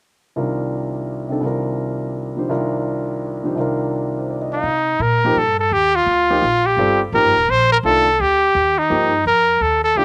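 Modal jazz in a swinging 3/4 at 169 BPM, hypnotic and searching, built on a single Cm11 chord in C dorian and cut from a longer piece. A clear, intimate concert grand piano opens alone with deep bass, long sustain and audible action noise, before a bright, punchy trumpet enters at 4.5 seconds with a forceful, scooped solo line carrying light vibrato and a slapback echo, joined at 4.6 seconds by a woody pizzicato upright bass. The sound is dry and open-air, with the trumpet sitting up front and the bass tucked well below the piano.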